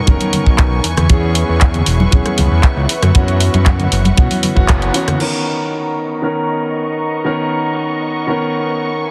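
A tight, polished kick drum sits up front in this sunny, groovy nu-disco excerpt at 117 BPM in 4/4 with a straight feel, joined by a fat, detuned sawtooth analog bass with a fast attack and its own filter sweep. A layered electronic house kit adds bright hi-hats, handclaps, rim clicks and a crash, while hard-handed acoustic congas with a thick skin sit in the background. A concert grand piano with a deep, open low end plays accompaniment in B major through sidechain pumping, a low-pass filter and tape echo. Above it, a dark, woody studio string section holds bowed chords with light vibrato and a soft attack, also pumping and filtered, moving from Bmaj9 to E6 and F#7sus4. After a band accent at 4.7 seconds, the bass, kick, congas and drums drop out by 5.3 seconds, leaving piano and strings to return to Bmaj9 under filter sweeps from 5.2 seconds. The whole mix has a light reverb and a heavily compressed, radio-like sound.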